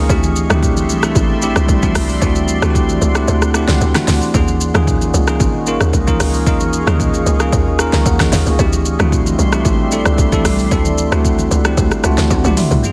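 Heavily compressed and radio-like with light digital ambience, this late-night, deep amapiano clip at 113 BPM sets a bell-like, clean tine electric piano up front over a dark, detuned ambient pad pumping with sidechain and chorus, a hollow, bouncy log drum bass, an overdriven deep house kit with punchy kick, fat snare and metallic hats, and very quiet thin-skinned congas, as the kick drops out at 3.3 seconds, the electric piano adds fills at 7.5 and 11.8 seconds, and a drum fill closes at 12.3 seconds over chords moving from D9sus4 to Eb9sus4 and back.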